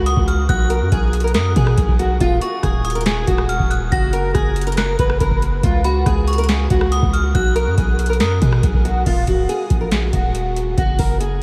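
A fingerpicked acoustic archtop guitar sits up front, carrying the melody with a boxy, fresh-stringed tone colored by analog chorus and delay. This is an eerie, hard-hitting trap beat in Eb minor at 140 BPM with a half-time feel, cut from a longer piece. Beneath it, a long sustained 808-style bass holds down the low end with a deep, mellow sine tone. A booming analog drum machine supplies a deep kick, crisp snare, rim clicks, metallic hi-hats and crash cymbal, all with a tape-warm character. High above, a bright, inharmonic FM bell rings out a second line, treated with chorus, tremolo and analog delay, until it drops out at 8.6 seconds. The harmony moves through B, Ebm7, Gb and Db7sus4, then shifts to Ebm and Gbadd9 after 9.1 seconds, and the dreamy mix is soaked in a huge ambient reverb and laced with vinyl crackle.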